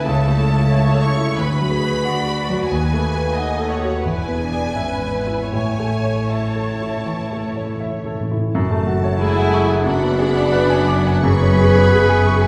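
Classical romantic movement for piano and orchestra, lyrical and passionate, moving with a rubato feel at 76-93 BPM in 4/4, shifting from A major to F# minor at 8.5 s. A clear, open concert grand piano sits up front carrying the melody across a broad range with a deep bass, while a lush studio violin section sings the melody above it with expressive vibrato and portamento. Beneath them, a focused chamber violin section traces a second line in the background, a smooth, close viola section fills in the accompaniment, and a very quiet, even cello section and a focused double bass section anchor the low end with bowed tone. Timpani played with medium mallets add a close, dry fill from 5.5 s to 8.5 s, leading into the minor-key turn. From 9.2 s a dark solo clarinet joins with a second line as a tight, very quiet French horn section holds sustained chords. The whole ensemble is heard from further back in a scoring stage with a wet 1.5-second reverb, and the passage is cut from a longer piece.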